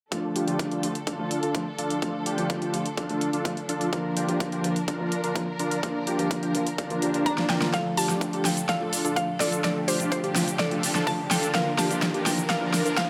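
The recording has a light reverb over a produced, pumping festival progressive house mix, anthemic and euphoric at 126 BPM in a straight 4/4, moving between D minor and B-flat. A huge, thick supersaw riff, detuned and compressed with a sub octave, pumps against the sidechain through a low-pass filter and delay. Beneath it, a dark, mellow baby grand piano with long sustain and a lush, distant string section holding bowed chords also breathe with the pumping. An overdriven big-room drum kit sits up front with a huge snare, hi-hat and shaker, while a punchy, layered electronic kick, re-recorded in a large room, stays in the background. A very quiet electronic swell and riser enters at 7.0 seconds, a woody, round FM mallet pluck carries a bright chorused melody from 7.3 seconds, and a catchy square-wave unison lead with vibrato adds background arpeggios from 7.7 seconds. That moment opens a build-up after a drum fill, with further fills and a filter sweep on the supersaw running until this excerpt of a longer piece cuts off.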